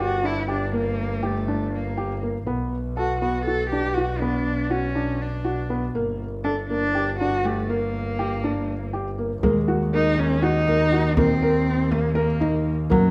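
A resonant recital-hall reverb surrounds this urgent, restless fragment of contemporary chamber music, cut from a longer piece and moving in a brisk 7/8 at 241 BPM in eighths, with chords shifting from G minor to B minor and back before a D#5 arrives. An expressive bowed cello carries the melody up front with vibrato, soft attacks and portamento, over intimate felt-muted upright piano arpeggios and a clear, nasal, earthy bowed double bass. At 9.4 seconds a dark thumb-plucked nylon-string guitar adds a second line while a deep frame drum played with hard hands sits in the background.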